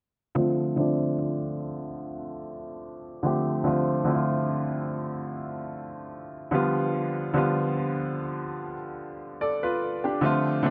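This R&B piece, cut from a longer work, has a late-night, moody feel at a slow 73 BPM in 4/4 with a light 16th-note swing. A solo concert grand piano carries everything, playing between D3 and D5 from 0.3 to 10.7 seconds. Its tone is clear and natural, with a deep bass register, and it sits up front in the mix, shaped by a low-pass filter and a delay. A filter sweep runs across the piano for nearly the whole passage. The harmony stays in D dorian, resting on Dm7 before moving to G7 at 6.5 seconds. A moderate, lush hall reverb with a long 2.4-second tail surrounds the playing and adds to its nocturnal atmosphere.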